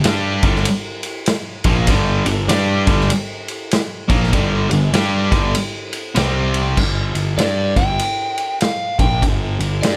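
A bright, double-tracked distorted guitar riff leads this heavy, smoky blues rock and southern rock power-trio excerpt in G minor at 98 BPM with a swung feel, over round fuzz bass and a vintage kit with dark cymbals, a punchy kick and a pumping small-room sound, until the riff stops at 6.8 s and a fingered slide guitar with plate reverb enters at 7.4 s for a solo.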